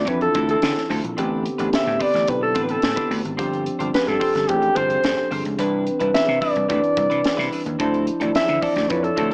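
Bittersweet and urban, this 9.3-second excerpt of polished 1980s jazz-funk pop in D dorian moves at 109 BPM in a straight 4/4, with a breathy, up-front alto saxophone carrying the melody over a worn, slightly out-of-tune tine electric piano bathed in lush chorus, a growly, punchy slap bass, a picked, compressed electric guitar riff with analog chorus, and a crisp fusion drum kit with a high-tuned snare and tight kick, all moving through Dm9, Am11, G7sus4 and Cmaj9 in light reverb with the small-speaker sound of a home cassette recording.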